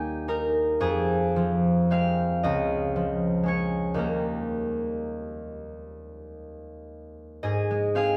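A solo concert harp, fingerpicked and ringing, sits up front in this serene, dreamy classical fragment cut from a longer piece, drifting in a slow, rubato 6/8 at about 30-42 BPM in dotted quarters and tuned to A4 = 437 Hz. The harp spans Db2 to Bb5, moving from Eb7 through Fm, Db and Eb before settling on Ab at 7.4 seconds. A moderate stone-room reverb surrounds its warm, acoustic tone, heard from further back in the space.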